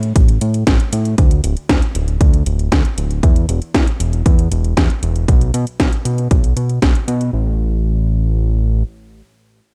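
A fat, detuned sawtooth bass with a wave-folded edge and a filter sweep sits up front in this nostalgic, bittersweet italo disco cut at 117 BPM in straight 4/4, sustaining between D1 and B2. Alongside it, a punchy electronic kick and a house kit of cracking snare and metallic hi-hats, both tape-warm and touched with studio reverb, drive the beat; the kick stops at 6.9 seconds and the kit at 7.3 seconds, leaving the bass alone until 8.8 seconds. The recording is dry and gritty, with a hardware character.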